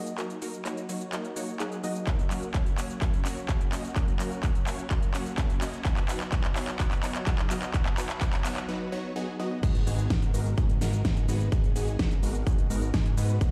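A detuned sawtooth supersaw stab opens this euphoric, powerful slice of festival progressive house, its punchy, filter-plucked riff pumping against the sidechain and trailing tape echo as a filter sweep and a moving notch work through it. A big-room dance drum kit builds beneath it from the start, with crisp hats, shaker, handclaps, toms, crash cymbal and a huge snare running a long drum fill, and a punchy, layered electronic kick joins up front at 2.1 seconds. The harmony moves from F# to B over the build-up before a brief break at 8.7 seconds. The drop lands at 9.6 seconds on G#m7, where a fat, wave-folded analog bass enters, thick and pumping, its detuned sawtooth-and-triangle tone shaped by its own filter sweep. The tape-warm drums and the synths sit in light digital ambience and a large studio reverb, sounding as if played on a big sound system in a bare room, and the passage is cut from a longer track.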